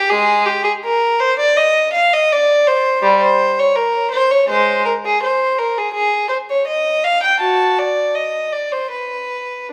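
Flowing rubato in 4/4 around 82 BPM gives this solemn, baroque-style suite movement in C minor a freely breathing pulse. A single unaccompanied violin, bowed in period style, carries the line across a range of G3 to A5 with a dark, nasal, reedy gut-string tone, set up front yet touched by a distant quality. Moderate recital hall reverb surrounds the player across this 9.7-second fragment of a longer piece.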